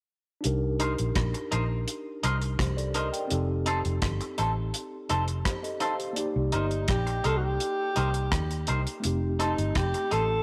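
Bittersweet and smooth, this short lovers rock reggae excerpt in C dorian moves at 84 BPM over Cm7 and F7, with a dry, up-front drum kit of tight kick, hi-hat and rim click, a dark, round, foam-muted electric bass, a mellow tine electric piano heard through built-in speakers, clean compressed stabs from a twangy guitar, and, from 6.5 seconds, a breathy, distant alto saxophone melody with light vibrato, subtone and tape echo, all in a light reverb.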